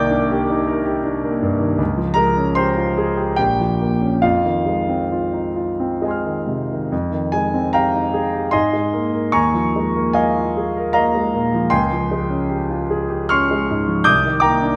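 In a three-beat metre played with free, elastic rubato, this short impressionist solo piano passage, cut from a longer piece, feels mysterious and nocturnal. A single concert grand carries the whole performance, its tone clear and natural, with a deep bass that reaches down to Bb1 and upper notes climbing as high as G6. The instrument sits up front in the sound, set in a moderate scoring-stage reverb that lends the room a gentle halo. The harmony drifts through colourful extended chords such as Cm9, Dbmaj7#11 and Eb9sus4, giving the music a hazy, unresolved shimmer. The opening idea returns at 6.9 seconds, and the passage closes on Cm9 at 14.1 seconds, coming back to the chord it began with.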